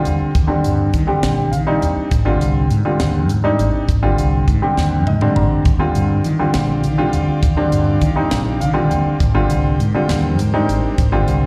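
A straight 6/8 groove at 68 BPM, counted in dotted quarters, drives this bright, slick electric jazz fusion excerpt in Eb major, where a tight funk drum kit with a high-tuned snare and a tight kick sits up front beside a round, dark fretless electric bass treated with lush chorus, while a present baby grand piano with slapback echo comps through Ebmaj9 and Abmaj7 chords and drops short fills, one of them shared with a drum fill at 4.8 seconds, before a soft, breathy pad with detuned sawtooth and noise layers and a slow attack drifts in quietly behind at 5.6 seconds, all heard as a live gig through the venue's PA in a recital hall.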